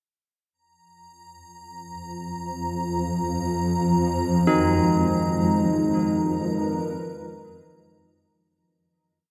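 Steeped in a cavernous cathedral reverb, this short, whole piece of dark, desolate ambient drone drifts in free time in F minor, as an icy, crystalline glass pad holding a high note enters at 1.3 seconds, a swarming, detuned granular drone rises up front at 2.1 seconds, bronze carillon bells ring a close-miked slow arpeggio loop from 4.5 seconds, and from 4.8 seconds a moody, wave-folded analog pad sustains slowly shifting chords alongside them as the harmony moves from Fsus4 to Abm.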